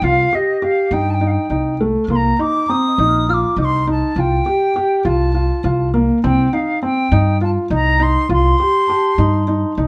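Contemporary chamber music in a restless, pensive 7/8 at 203 BPM in eighths, set in C dorian, where an airy wooden flute with soft-attacked vibrato carries the melody over mellow arpeggios from a felt-muted upright piano with audible action noise and a woody, growly pizzicato upright bass, while a delicate, bell-like celesta rings in the background from 2.7 to 4.3 seconds and again from 8.9 seconds, all within a moderate studio reverb in this brief cut from a longer piece.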